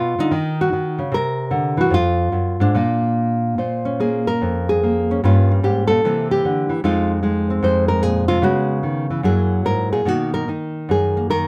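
A fingerpicked nylon-string guitar plays alone from the start, acoustic, full-bodied and up front, moving through moody minor-seventh and dominant chords at a swinging 148 BPM with a rubato feel, settling into Bb minor at 3.6 s for a solo that runs to 11.5 s, heard through close, detailed microphones with light reverb in this short cut from a longer solo jazz piece.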